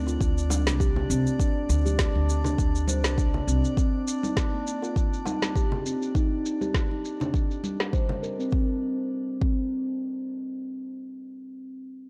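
A dry, hardware-recorded slice of mystical organic downtempo, cut from a longer piece, in which an up-front steel tongue drum plays round, ringing arpeggios through vintage 12-bit sampler grit and analog delay, over a deep overdriven electronic kick, a woody overdriven snare with electronic shaker, bright band-limited bongos and congas, and a drifting, glassy harmonics texture with chorus, while a pizzicato upright bass with sidechain pumping plays only until 3.6 s.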